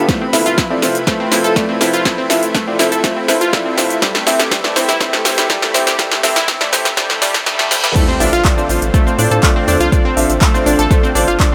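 A deep, layered electronic kick sits up front through this dreamy, bittersweet progressive house excerpt at 122 BPM, joined by a big-room dance kit with a punchy snare, crisp hats, handclaps, shaker and crash cymbal. The first 8.0 seconds form a build-up with a drum fill and filter sweep, and a very quiet riser, reverse cymbal and sub drop enter at 3.8 seconds before the drop lands at 8.0 seconds with an impact. A detuned sawtooth analog pluck carries bright, evolving arpeggios with chorus, delay and vintage 12-bit sampler grit, while a concert grand piano adds low-pass filtered stabs with delay and a deep low end. Underneath, a round, dark analog bass of sine and triangle tones and a thick, lush unison pad in the background both pump against the kick, moving through Fmaj7/A, Am7 and Dm7/A. A very quiet, glassy texture of drifting overtones floats calmly over the build-up until 8.0 seconds, and a huge ambient reverb bathes the mix.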